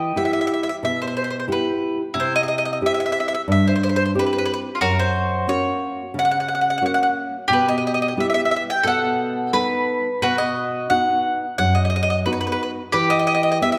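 Two picked mandolins and a fingerpicked classical nylon-string guitar open together in this wistful, romantic Italian folk serenade, moving at an unhurried 89 BPM in E harmonic minor. The round, up-front lead mandolin sings the melody while a woody second mandolin carries a lower line, and the guitar supplies accompaniment beneath them through a chord progression that passes from Emadd9 through C, F# and B7 before settling on Em at 12.9 seconds. A lush reverb, as of a church or concert hall, surrounds the trio throughout this short passage cut from a longer piece.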